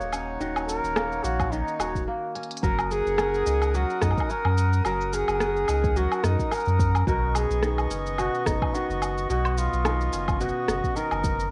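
Delicate and autumnal, this folktronica fragment sets a mellow, distant flugelhorn melody with light vibrato over reedy accordion chords and ringing, fingerpicked kora arpeggios that carry a filter sweep at the start, all on a round, dark sub bass and smooth-hatted electronic drums whose deep kick enters at 1.4 seconds, ahead of a brief break and fill, the whole soaked in the intimacy of a cassette home recording moving through Ebm7, Gb6 and Badd9.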